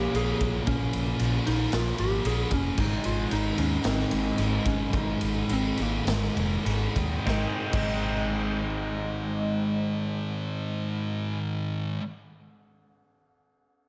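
This blissful, dreamy shoegaze and dream pop excerpt opens at once with a thick, up-front fuzz guitar and a crunchy overdriven guitar picking riffs in Ab major. A round, gentle FM synth lead with a keys-like, decaying tone carries the melody through chorus and tape echo. Beneath them a vintage electric bass, dark, amped and foam-muted, holds the low end. A raw garage drum kit adds a punchy kick, medium-tuned snare, ride and crash, its sound gritty and saturated in a bright, pumping stone room. The tempo sits between 97 and 114 BPM in a straight 4/4, and the harmony moves from Bbm7 to Ab at 2.8 s as the pace slows until 7.3 s. The drums drop out at 7.9 s, leaving the guitars, bass and synth to close. Throughout, the overdriven guitar trails a reverse reverb, the fuzz guitar carries a subtle chorus, and light reverb with small room ambience frames the sound.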